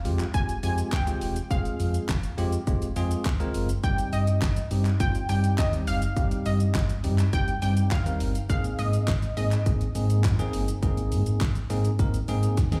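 A detuned, warbling analog pluck carries the melody in this upbeat, summery dance-pop excerpt, its vintage sawtooth tone thickened by chorus, delay and slapback echo over chords moving from Fmadd9 to Cm and Abadd9. A bell-like, bright tine electric piano with slapback echo and a deep, sine-based sub bass with octave both pump under sidechain. Meanwhile an up-front, layered pop kit with punchy kick, fat snare, handclaps, hi-hat and shaker drives everything to a drum fill at 12.6 seconds, all heard as a live gig through the venue's PA with club reverb.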